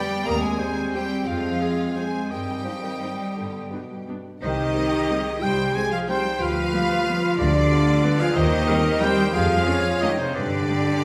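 A bittersweet, sweeping orchestral ballroom waltz in C minor opens with the woodwinds and most of the strings: a rich violin section carries the vibrato-laden melody over dark, distant French horns holding sustained chords and smooth cellos anchoring the bass. Airy flutes, a clear solo oboe, a mellow clarinet and a second, softer violin line weave supporting parts, while a smooth-topped bassoon adds accompaniment until 4.4 s. The double basses enter at 0.3 s with soft-attacked lushness and a very quiet viola section adds expressive portamento, all moving in a rubato 3/4 at 161-198 BPM within a reverberant concert-hall acoustic.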